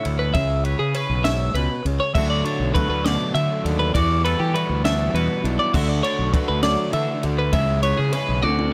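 Math rock and midwest emo in 6/8 at 67 BPM, this short excerpt feels playful and wistful, moving through C#m7, D69, Em11 and back around. Up front, a clean, compressed twelve-string electric guitar spins warm arpeggios, while a twangy, fingered electric guitar fills out the accompaniment beneath it. A fuzz-drenched fingered bass growls prominently from 0.1 s, its overdriven tone adding grit to the low end. At 2.1 s a crunchy, double-tracked overdriven guitar joins with a picked riff, sitting in the background of the mix. The compact cocktail kit sounds natural and tight, with a punchy kick, high-tuned snare and dark cymbals, and it closes with a drum fill at 8.4 s. Light reverb gives the whole passage a modest sense of space.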